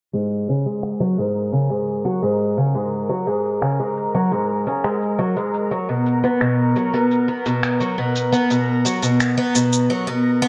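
Soaked in a moderate echo-chamber reverb and low-passed, this delicate folktronica fragment at 86 BPM puts a boxy, shimmering, octave-doubled twelve-string acoustic guitar up front, picking arpeggios through digital delay and a filter sweep over F#add9 and then B5 at 5.7 seconds, while tape-toned electronic shaker and finger snaps sit beneath under their own filter sweep and a bright, granular reversed texture swells dreamily in the background from 1.2 seconds.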